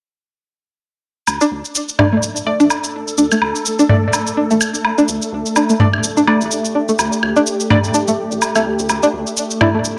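A dry, gritty hardware sound with a cassette-tape haze and light reverb frames this short cut from a longer minimal techno piece, clinical and hypnotic in mood, with a swung 4/4 groove. Just past 1.3 seconds the shaker and the up-front electronic woodblock and toms arrive together, both carrying a tape-softened edge and the air of a large room. Alongside them comes a rubbery, hollow square-wave bass, bouncy and dark, sitting low and filtered in the mix. The loudest voice is a string-like resonator pluck, twangy and warbling with a vintage brightness, coloured by chorus, phaser, cassette tape and tape echo. Muted, detuned dub chord stabs join at 2.0 seconds through phaser and analog delay, and by 2.3 seconds a swarming, tense granular drone swells in slowly, evolving inside its own reverb.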